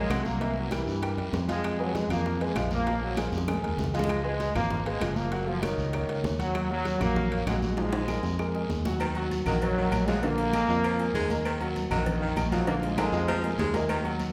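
Bathed in the reverb of a resonant hall, this fiery, passionate salsa excerpt puts a punchy trombone section with light vibrato up front over a clear grand piano and a dark, round fingered electric bass, while congas, raspy guiro, woody claves, ringing timbales and agogo bells, and low-tuned bongos and cowbell drive the groove, drum fills break in around 3.2, 7.8 and 12.7 seconds, and a bright solo baritone saxophone with vibrato joins as a second line at 9.0 seconds.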